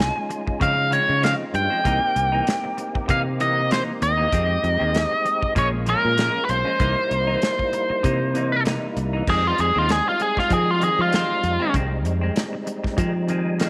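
A biting, overdriven lead guitar sits up front, carrying the melody of this mournful, brooding soul blues in F minor at 97 BPM, moving into a solo at 9.3 seconds and dropping out at 11.7 seconds. Beneath it, a fat, percussive tonewheel organ with key click, slow rotary speaker and chorus vibrato supplies accompaniment, while a compressed, twangy clean electric guitar with slapback echo adds stabs in the background. A round fingered bass and a small-room soul kit with a tight kick and rolled-off top hold the straight-eighth groove over changes such as Dbmaj7, C7#9 and Fm7, and the organ steps forward with a fill at 13.0 seconds, the mix set in light reverb and studio ambience.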